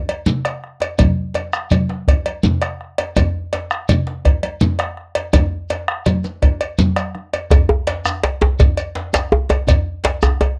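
Thick-skinned congas and a metallic cowbell open this powerful, driving West African drum ensemble excerpt in 12/8, joined at once by a deep, saturated djembe, a grainy, mellow shekere and a round, up-front bombo. The congas drop out at 7.2 seconds, and at 7.5 seconds a second djembe enters, tight and cracking, close and dry. The recording has a dry, close 1970s studio character with light reverb.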